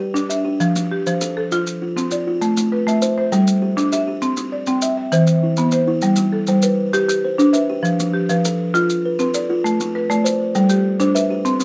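Rippling and warm, this short cut from a longer southern African traditional piece in a straight 12/8 feel pairs a bright, woody buzzing marimba, struck with medium hard mallets, with a hollow, ringing buzzing kalimba, both spinning interlocking mbira-style arpeggios up front, while grainy, mellow maracas add a close, dry texture, all captured by detailed close microphones with little reverb.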